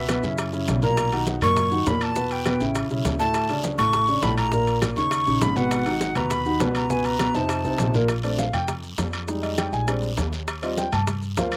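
An up-front concert grand piano, intimate and smooth with a deep bass and audible action noise, carries this sunny, lively Afro-Cuban jazz excerpt at a brisk 202 BPM in a straight 4/4. A breathy, bright metal flute states the melody with vibrato and a crisp, chiffy attack until 7.9 s, while the piano comps beneath it through fast-moving chords such as F#7, Bmaj7, G#m7 and C#7. At 8.1 s the music settles into B-flat major and the piano takes a solo over richer harmonies like Bbmaj9, Fm9 and Bb13. A pizzicato upright bass with steel strings gives a growly, woody low end. The percussion section has tight, high-tuned bongos played with hard hands, ringing metal-shell timbales, and raspy guiro, while thin-skinned congas, vintage claves, and grainy, mellow maracas sit further back in the mix. The sound is dry, with little reverb and an open-air feel.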